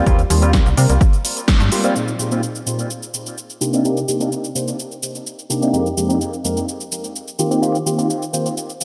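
Sensual and funky, this filtered disco house excerpt opens with an overdriven electronic kick and a snappy, metallic FM slap bass that both stop by 1.7 seconds, while a barky, up-front tine electric piano with phaser, tape echo and sidechain pumping carries chords from Eb69 through Bb9sus4, Cm9 and Fm11 under a filter sweep from 2.0 seconds, and a dry, punchy analog drum machine adds snare alongside a pumping hi-hat and shaker in an echo-heavy chamber reverb.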